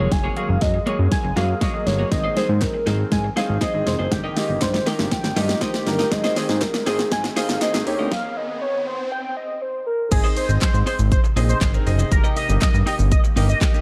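A straight 4/4 pulse at 120 BPM drives this upbeat, carefree dance-pop excerpt in Ab major, with a punchy, layered pop drum kit of kick, fat snare, hi-hat, shaker, handclaps and crash sitting up front beside a thick, fat analog sawtooth bass that pumps to the sidechain and carries a filter sweep. A velvety synth lead with vibrato, chorus and delay sings the melody over a clear concert grand piano, also pumping, while a bright, twangy twelve-string electric guitar picks a clean, compressed riff and a cloudy granular pad drifts very quietly underneath. The first 10.1 seconds form a build-up over chords moving from Gbadd9 through Ab and Eb/G, with a drum fill, a very quiet electronic riser from 6.2 seconds and a very quiet, crisp group handclap that joins at 2.6 seconds. After a stop, the drop lands at 10.1 seconds, where a bold, retro octave-doubled lead takes over the melody with phaser, chorus and delay. 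The production is dark and warm with light reverb, giving the mix a rounded, polished finish.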